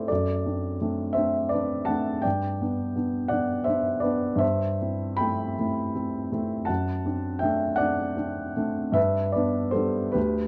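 A romantic classical nocturne for solo piano in G major, this nostalgic, dreamy excerpt drifts in a rubato 12/8 at about 48-58 BPM, with a clear, natural, up-front baby grand of short sustain ranging from D2 to B5 under light reverb and a dark production, moving through D7/F#, G, Am7/G and D7/F# once more before settling back on G near 9.0 seconds.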